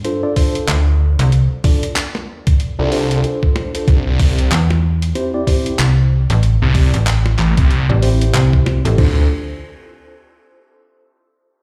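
Dry sources are played back through a big sound system in a bare room and caught with a large studio reverb, giving this gritty, funky glitch hop fragment a booming, roomy edge. At 94 BPM in 4/4 with a swung sixteenth feel, it sits in a drop, where a thumpy electronic kick arrives a moment in and sits up front beside a compressed, pitched-down sampler-style kit of hi-hat, handclaps, crash cymbal and a high-tuned snare. A snappy, digital FM bass with a metallic attack and decaying notes carries the low end, and a thick, swirling detuned saw bass, saturated and run through a phaser, joins it at 2.8 seconds. Over the Dm7 harmony, which moves to C at 3.9 seconds, a mellow, clean tine electric piano plays stabs heard as if through its built-in speakers, pumped by sidechain and trailed by dub echo. The chords drop away at 9.0 seconds as the parts close out and a new section begins.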